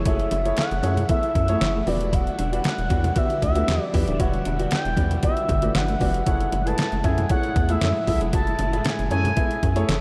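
Early-eighties boogie funk with a late-night, funky feel, this short cut from a longer piece sets a smooth, vibrato-laden sawtooth synth lead over a rubbery, bouncy square bass, a thumpy, up-front detuned 8-bit drum machine with fat snare, hi-hat and handclaps, a swirling phased string machine in the background, a polished grand piano, a very quiet slightly broken-up electric guitar riff and faint ringing congas, all bathed in dreamy cathedral reverb as the chords move from F#m9 to Em9 and back.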